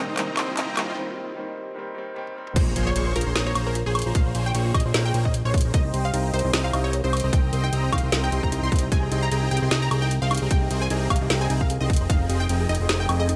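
This bittersweet, lush future bass at 151 BPM in F minor opens with a build-up, where a clear, worn grand piano with sidechain pumping and dub echo, a faint shimmering pad, a very quiet, tine-like thumb-piano-style synth pluck, huge phased supersaw chords and a background riser gather over a filter sweep and a woody, metallic-hatted trap kit. At 2.6 seconds the drop lands with an impact, bringing in a hard-clipped kick, a fat, nasal, saturated analog bass and a punchy, wave-folded unison pluck lead carrying the melody. The half-time, swung groove moves through Cm7, Bbm9 and Fm11 chords in this short section cut from a longer piece.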